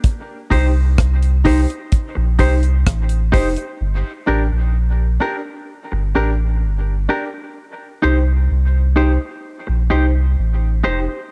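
Dub reggae at 64 BPM in a straight 4/4, hypnotic and deep, moving from Cm to Gm at 3.8 seconds and back to Cm at 7.6 seconds in this fragment of a longer piece. A dry, tight drum kit with hi-hat, kick and rim click sits up front only until 3.8 seconds, while a round, sustained sine sub bass anchors the low end from 0.5 seconds. Above it, a clean, compressed semi-hollow electric guitar carries spring reverb and dub echo, and a woody, boxy upright piano adds echoed stabs, all captured in a close, 1970s-style studio sound.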